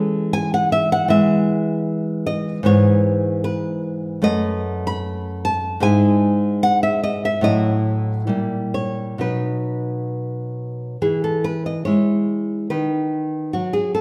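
A solo nylon-string guitar opens the recording, fingerpicked in a classical style and heard up front, with a bright tone that ranges from deep bass notes to high treble. The piece is romantic in character, its mood warm and nostalgic, and the playing follows a flexible rubato feel in a duple metre. The harmony moves through shifting chords, passing through diminished colours before settling on a dominant chord around 9.2 s, after which a new section begins at 11.0 s. A resonant recital-hall reverb surrounds the guitar, giving it the spacious bloom of a church or concert hall. This short passage of 14.0 seconds is cut from a longer work.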